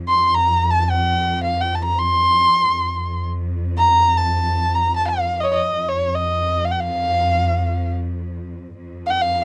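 A bowed cello section opens the recording with a rich, focused drone on F2, its smooth top and vibrato settling under the music from the first moment. Just after, at 0.1 seconds, a single dark kamancheh enters up front with the melody, moving between Db5 and C6 in F dastgah homayun. Its playing is expressive and passionate, shaped by vibrato and sliding portamento over the steady low bed of the cellos. The piece unfolds in free time, giving this fragment of a longer Persian modal work a passionate, warm feel. Close, detailed microphones and light reverb keep both the kamancheh and the cello section vivid and present until the cut at 9.4 seconds.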